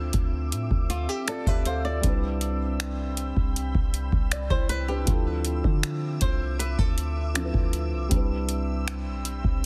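Sensual and moody, this contemporary R&B passage is cut from a longer piece and moves in a straight, unhurried 4/4 over a Dm9 to Cmaj7 progression. A booming analog drum machine sits up front with a deep kick, metallic hi-hats, finger snaps and a softly clipped snare, while a round, sine-like 808-style bass with a fast attack and a faint noise layer anchors the low end. A felt-muted upright piano supplies dark, intimate accompaniment, its thick felt and audible action noise giving it a vintage softness. Behind it, a glassy FM pad holds ethereal sustained chords, thickened by ensemble chorus and its own reverb and pumping against a sidechain. A fingerpicked flamenco guitar weaves delayed acoustic arpeggios from 0.9 to 7.9 seconds. The overall sound is dry, dense and heavily limited in a modern way.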